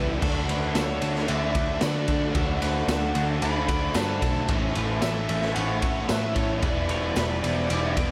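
Shoegaze-leaning dream-pop rock in D major at 112 BPM, this wistful, dreamy fragment of a longer piece sets a biting overdriven lead melody with delay over three layered overdriven guitar riffs, bright twangy twelve-string arpeggios, a faint warbling string-machine viola pad, a round, foam-muted bass up front, a gritty, boomy garage drum kit in a pumping small room from 0.2 seconds, and a distant jingly tambourine, moving from D to A to Em7.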